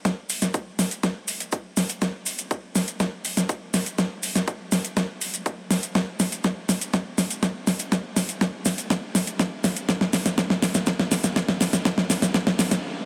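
An overdriven pop drum kit sits up front with a fat snare and metallic hats, playing a drum fill through this emotional, driving house build-up at 122 BPM in a straight 4/4. Beneath it, a punchy, layered electronic kick drives the groove until 12.4 seconds, while grainy, mellow maracas stay in the background. A moderate amount of huge ambient reverb surrounds the cut from a longer piece, and the pop kit and maracas stop together at 12.8 seconds.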